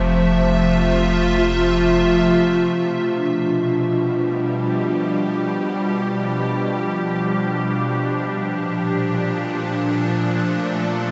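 The recording sits in a huge, wet ambient reverb with a long 7.4-second tail, and its top end is rolled off, giving the whole space a hazy sheen. This serene ambient passage, cut from a longer piece, floats in free time. Up front, an evolving wavetable pad carries sustained chords, its detuned sine tones morphing under ensemble chorus and built-in reverb, bright with a slow attack and long release. Further back, a vibraphone played with soft mallets spins mellow, metallic arpeggios with medium motor vibrato and a delay, close-miked and ringing until 8.1 s. A deep, round sub bass holds a single F1 beneath the opening Fmaj7 and drops out at 2.7 s, as the harmony moves to G7 and later to Bbmaj7.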